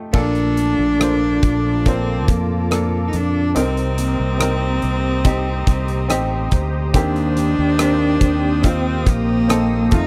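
Heartfelt, hopeful pop ballad at an unhurried pace in a straight 4/4, cut from a longer piece, with a smooth bowed cello singing the melody up front, its vibrato touched by slapback echo, over a brilliant, woody upright piano and a very quiet, full-bodied fingerpicked steel-string acoustic guitar playing arpeggios. A punchy fretless electric bass and a huge arena drum kit with bright crash cymbals, hi-hat, rim clicks and a punchy kick sit prominently in the mix, while a warbling, vintage analog pad with chorus joins at 0.8 seconds in the background with sustained chords. The recording is dry and close in a 1970s studio style, moving through Bbmaj7, Cm7 and Eb6.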